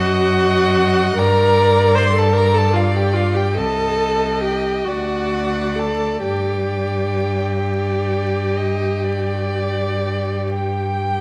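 Swaying in a rubato 12/8 at roughly 39-51 BPM, counted in dotted quarters, this slow romantic movement for string quartet in G minor has a melancholic, solemn mood. Two dark-toned violins sing together throughout, the first carrying the expressive melody with vibrato, portamento and a smooth top, while the second adds a woody line that sits above it. A viola with a warm, expressive vibrato and gliding portamento fills in the accompaniment, and a rich, focused cello anchors the bass, placed up front in the mix. All four bowed players sound for the full 11.2 seconds of this fragment cut from a longer piece, with the harmony passing through G minor, C minor and D. A reverberant recital hall surrounds the quartet, and a vinyl crackle adds an aged patina to the sound.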